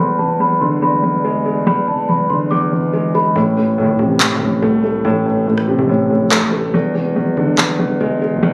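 A dark, ominous half-time drill cut at 142 BPM in A harmonic minor opens over an E7 chord and a filter sweep, with a bell-like, delicate celesta melody carrying low-pass filtering and delay above a mellow, up-front grand piano with audible action noise, while a very quiet, detuned sawtooth pad sustains chords beneath. At 3.4 seconds the harmony moves to A minor as the celesta and pad drop out and a saturated, aggressive 808-style bass enters in the background beneath the piano, joined at 4.2 seconds by up-front electronic handclaps and rim click before the harmony returns to E7. The sound, captured on a phone in the room, carries light reverb, studio ambience and compression.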